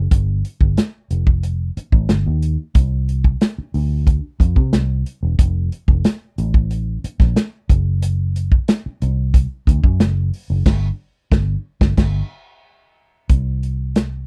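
A straight 4/4 groove drives this cinematic, bittersweet slice of lush 1970s-style soul, where a dark, foam-muted fingered electric bass sits round and punchy up front beneath an acoustic kit of kick, snare, hi-hat and crash with dark cymbals and a rolled-off top, all in a largely dry mix, until the band lands an accent from 10.7 to 13.3 seconds.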